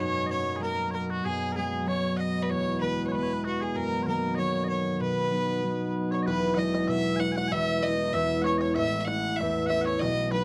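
Cheerful and rollicking, this short cut from a longer Celtic reel runs at a brisk 192 BPM in 4/4 with a light swing on the eighth notes, starting in B major and moving to E major at 6.3 seconds. A clear, biting fiddle carries the melody up front, bowed by a single player with light vibrato and an earthy edge, though it sits at a slight distance. Mellow small bagpipes spin a sweet, continuous second line alongside it, while a concert harp, fingerpicked and ringing, provides the accompaniment from the low register and stays prominent throughout. For the first 6.3 seconds a hand-pumped harmonium holds a reedy, nasal, breathing drone on B, dark and smooth in tone. At 6.1 seconds a twangy bluegrass banjo played with fingerpicks slips in very quietly with a percussive second line as the tune turns to its second section. The sound is dry and close, like a 1970s studio session, touched with light reverb.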